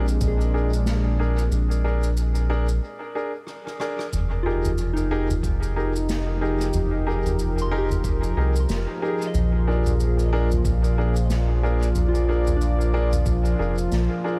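Ambient dub in F dorian at 92 BPM, this hazy, meditative passage cut from a longer piece moves at an unhurried 4/4 pace with a swung sixteenth-note feel. A smooth, detuned analog pad holds sustained chords with a slow attack and chorus, shifting from Bb7 to Fm11 and back to Bb7. Above it, a soft FM synth bell spins gentle, warbling arpeggios in the background, its decaying tones trailing into dub echo, while a woody upright piano places clear, polished stabs roughened by vintage 12-bit sampler grit and echo. Up front, a round, deep analog bass blending sawtooth and sine gives a dark, sustained low end. A soft-mallet acoustic kit with a fat snare, rim click, shaker and toms sits in a natural hall sound with dub echo, with a break from 2.8 s and a drum fill leading into the second section at 4.1 s. A muffled, pitched-down electronic kick thumps briefly at the start and returns in the background from 5.4 s, all set in a small room ambience within an echo-heavy mix.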